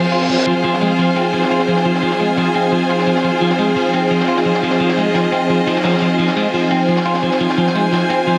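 A clear, focused studio string section sits up front, its bowed ensemble tone carrying audible vibrato across the whole passage in this dark technical drum and bass cut from a longer piece, moving at 173 BPM in F minor over a single F minor chord. Beneath it, a sweeping resonant pad holds sustained chords with a detuned sawtooth edge, soft attack and long release, sounding bright and evolving through its chorus. A clean, picked electric guitar plays arpeggios through a low-pass filter and dub echo. An electronic reverse cymbal opens the passage and ends by 0.5 s, and a crunchy breakbeat kit enters at 0.1 s in the background, its gritty, saturated hi-hat, ride and high-tuned snare filtered to a rolled-off, dark top. A barely audible layer of crisp electronic hi-hats adds tape-tinged detail, while moderate room reverb and a heavily compressed, radio-like finish give the whole passage a mechanical, aggressive mood.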